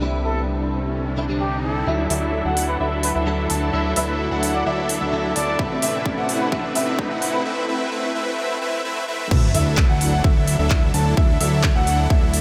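A bright, clean electric guitar with chorus and delay opens this emotional, euphoric festival progressive house excerpt at 129 BPM, over a fat, saturated analog bass and a very quiet riser, soon joined in the background by a breathy plunger-muted trumpet melody with light vibrato. At 1.9 seconds a build-up begins as lush, detuned supersaw chords and filtered, boxy grand piano arpeggios enter, moments later the big-room drum kit adds crisp hats, handclaps and crash, and a punchy electronic kick arrives with a drum fill at 5.6 seconds. The drop lands with an impact at 9.3 seconds, with sidechain pumping on the bass, chords and piano and a huge, dreamy reverb soaking the mix as the harmony moves from Cadd9 through Dadd9 and Amadd9.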